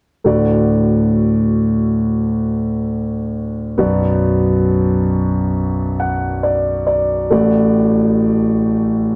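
A solo concert grand piano, up front with an open tone, deep bass and long sustain, carries this tender, heartfelt pop excerpt at a slow 68 BPM in D major, moving from D to Bm and settling on D/A, with a fill from 5.6 to 7.3 seconds, set in a dark, warm, nearly dry production.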